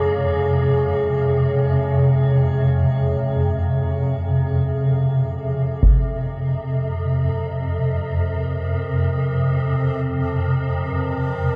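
In free time, this ominous, cavernous dark ambient drone, cut from a longer piece, pairs a swarming, detuned drone held up front from 0.0 s with a deep, moody sawtooth pad under chorus and shimmer reverb that fades in as the harmony moves from Db to F at 5.8 s, where a brief burst of heavy, dry taiko lands through a low-pass filter and a breathy, hollow bamboo shakuhachi soon joins in the background with shimmer reverb and delay, all set in a huge seven-second reverb and worn, warbling cassette tape.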